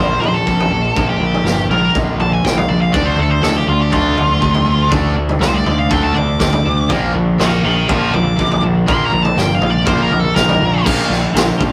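A straight 4/4 pulse drives this dark, angsty excerpt of quiet-loud alternative rock, where a nasal lead guitar with a parked wah and overdrive plays an up-front solo over a gritty garage drum kit with a boomy kick that enters at 0.2 s, a punchy, bright picked bass, a compressed fuzz guitar riff in the background, a very quiet, twangy twelve-string electric guitar playing clean arpeggios, and a faint distorted guitar riff that joins at 2.9 s, all captured in a rough rehearsal-room sound with moderate reverb.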